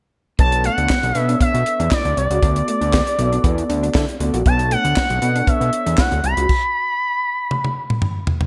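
Early-eighties boogie funk at 118 BPM in B minor with a funky, late-night mood, where a smooth, sawtooth portamento lead with vibrato and chorus sings up front over fat, detuned analog bass with a filter sweep, round, dark synth brass, a slightly broken-up, lo-fi electric guitar riff through a small old amp drenched in lush chorus, and a tight, dry funk kit with a high-tuned snare, handclaps and gated reverb, until the band stops at 6.5 seconds, leaving the lead and drums, whose fill arrives at 7.5 seconds in this bright digital mix.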